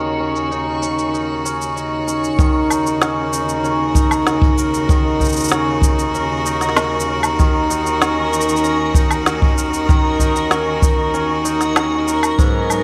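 A hammered cimbalom rings out up front in shimmering arpeggios, its notes trailed by a digital delay, in this intimate, autumnal folktronica excerpt in Eb minor at 96 BPM. Alongside it, a bright string quartet holds sustained chords with light vibrato and an airy, biting bow, its close chamber sound resting on an Ebm7 harmony. A reversed, swelling texture with a soft attack and long release drifts dreamily in the background, granular and bathed in its own reverb. Electronic shaker, woodblock and a woody snare enter at 0.4 seconds, and a boomy acoustic kick played with brushes joins up front at 2.4 seconds as the second section begins. The whole recording sits in a light small-room ambience, softened by a low-pass filter and a layer of vinyl crackle.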